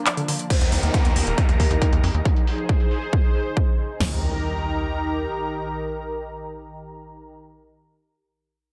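A light digital reverb frames this short cut from an uplifting trance track. At 137 BPM in a straight 4/4 in Eb major, it opens on a brief break over a Bb chord, carried by a lush, thick, airy pad of detuned sawtooth unison voices with a noise layer, slow attack, chorus, phaser and sidechain pumping. At 0.5 seconds a big-room dance kit lands up front, overdriven, with a punchy kick and snare, toms and crash. Alongside it runs a techno kit of handclaps, crash and metallic hats, already in from 0.1 seconds, re-recorded in a small room and low-pass filtered, while a filter sweep runs across the drums. A tight, driving sequencer bass of sawtooth and square waves, with a filter pluck, moving notch and fast, decaying notes, pumps beneath the harmony as it moves from Eb to Ab and back to Eb. A downlifter and impact add electronic punctuation, and the soaring, uplifting pad carries on after the drums and bass drop out.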